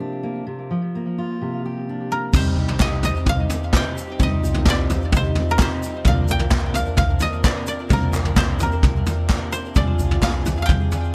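A woody koto carries the yearning, bittersweet melody of this indie folk piece in C minor at 129 BPM, entering at 2.1 seconds over a full-bodied fingerpicked steel-string acoustic guitar that opens alone with tape echo, after which a roomy brush drum kit with dark cymbals, a thumpy pizzicato upright bass, a shimmering twelve-string acoustic guitar, a reedy, breathing pedal harmonium, a clear, slightly detuned upright piano, a grainy tube shaker and hollow, distant group handclaps fill out the building, echo-heavy arrangement.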